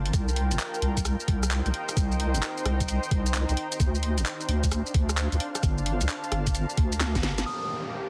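A deep, wobbling bass with a chorus sheen and a blurred, granular pad with built-in reverb and sidechain pumping open this soulful, late-night slice of two-step UK garage, cut from a longer piece. A gritty, pitched-down electronic kick with a thumpy, tape-warm body arrives alongside a layered garage kit of handclaps, rim clicks, shaker, bright hi-hats and a cracking snare, with low-pass filtering on the hats, snare and percussion and a swung sixteenth-note feel. The harmony moves from Cm7 to Dm7 and then Gm9, the bass sitting dark and up front beneath the cloudy, evolving pad. A drum fill from 7.0 seconds leads to a band accent at 7.3 seconds, and the bass drops out at 7.4 seconds. At 7.5 seconds the chords return to Cm7 as a brief, pure FM bell note rings with chorus and dub echo over a falling downlifter, all wrapped in a heavily compressed, radio-like digital ambience.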